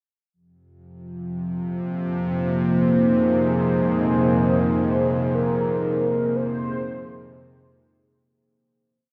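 Unfolding in free time, this brief, complete dark ambient drone piece rests on a single F minor chord, and its mood is unsettling and ominous. A deep, moody pad sits up front from 1.1 seconds, its sawtooth and sine layers with a sub octave carrying sustained, slowly shifting chords, while chorus and built-in reverb give it a warbling, vintage cast. Beneath it, a tense, string-like bowed drone holds the low register with vibrato and a bright, detuned sawtooth edge over a noise layer. At 4.4 seconds a mellow, horn-like synth lead enters with call-phrase motifs, round and warm through ensemble chorus and delay. The mix is dreamy and soaked in plate reverb with a cassette tape character, as the synth drone fades in and the piece begins fading out from 4.3 seconds.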